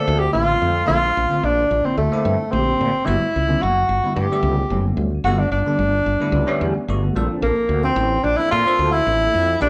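Electric jazz fusion at 110 BPM in a straight 4/4, this short cut from a longer piece feels soaring and slick. A breathy tenor saxophone carries the melody from the start, its mellow jazz-style solo colored by light vibrato and scooped notes, sitting up front yet with a distant, roomy quality. Beneath it, a bell-like tine electric piano supplies bright, clean accompaniment treated with phaser, while a woody fretless electric bass enters at 0.1 seconds with a dark, growly, round tone that stays direct and close. The harmony moves through lush major-ninth chords, shifting from Bbmaj9 to Gmaj9 at 3.1 seconds and returning to Bbmaj9 at 7.2 seconds. The band plays live together in a large studio with moderate reverb, giving the performance an open, natural sense of space.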